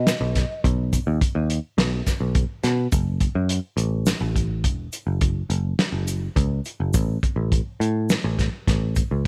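Studio reverb surrounds an up-front rhythm section in this tense, driving fragment of progressive instrumental band music in 7/4 at 104 BPM, set in F# dorian. A hollow, airy concert flute sounds a single soft D#5 that stops by 0.6 s, while a growly, punchy picked electric bass and a saturated soul drum kit with a fat snare and pumping room carry the piece, with a grainy tube shaker sitting in the background. The harmony moves from B to F#m, and then the chords fall away at 6.9 s.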